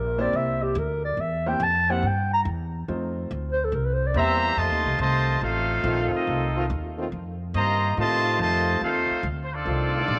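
A swinging 4/4 jazz excerpt at 141 BPM opens with a dark, breathy clarinet solo over woody pizzicato upright bass and a clear baby grand piano on C7 and F7, then at 4.2 seconds a vibrato-laden trumpet section takes the melody over a background trombone line, with a mellow trombone section adding sustained chords from 5.8 seconds in F major, all in an energetic, brassy mood bathed in echo chamber reverb.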